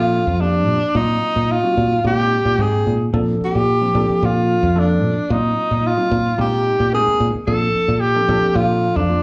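A breathy alto saxophone leads this soaring, slick stretch of electric jazz fusion, singing a clear, jazz-style solo line up front with subtone, vibrato and scooped notes, set in slapback echo and plate reverb. Alongside it, a worn, slightly out-of-tune tine electric piano plays clean accompaniment through its built-in speakers, sitting further back and also carrying plate reverb and slapback echo. A fingered electric bass, foam-muted yet growly and punchy, holds the low end with a direct, up-front presence. The piece moves at 111 BPM in a straight 4/4 in Bb major, cycling through rich chords such as Gm11, Ebm6/Bb and Abmaj9/Bb before settling on Bbmaj13 at 8.3 seconds. Heard as a live gig through the venue's PA, it carries club ambience and moderate room reverb across its 9.2 seconds, a short cut from a longer performance.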